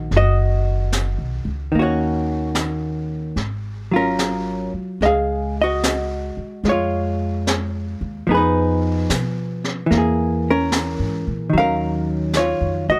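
A melancholic, wistful jazz ballad, this short excerpt from a longer piece moves at an unhurried pace with a gentle swing. A hollow-body jazz guitar sits up front as accompaniment, its clean, fingered tone dark and compressed as it voices lush extended chords such as Bmaj9 and Ebm9. Beneath it, a pizzicato upright bass with steel strings adds a woody, shadowed low end throughout. A jazz brush drum kit enters at 0.1 seconds, its high-tuned snare brushed alongside the hi-hat with a warm, rolled-off top that keeps it soft despite its forward placement. Light reverb gives the trio an intimate studio-room feel, and the drifting harmony, passing through a half-diminished Fm7b5, deepens the wistful mood.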